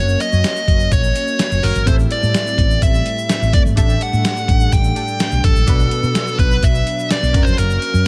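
1980s-style pop with a romantic, nostalgic mood, cut from a longer piece, where a dark, overdriven lead guitar carries the melody up front with digital delay over warm, detuned analog keys and a mellow, sustained analog pad (both with chorus), a round, woody fretless bass, a gritty, thumpy sampler-style drum kit with hi-hat, snare and tambourine and gated reverb, a grainy egg shaker in the background, and chords moving from F# through Am7, Dsus4/A and Bm back to F# in a digital ambience.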